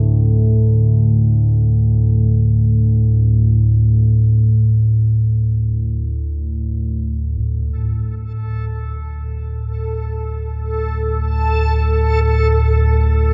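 Cavernous and unsettling, this fragment of dark ambient drone in free time rests on an ominous, rumbling synth drone holding a D5 chord up front, which takes on a filter sweep from 7.4 seconds before a faint, reversed and detuned granular texture glimmers in at 8.5 seconds with shimmer reverb, all suspended in a vast cathedral echo with the muffled haze of cassette tape.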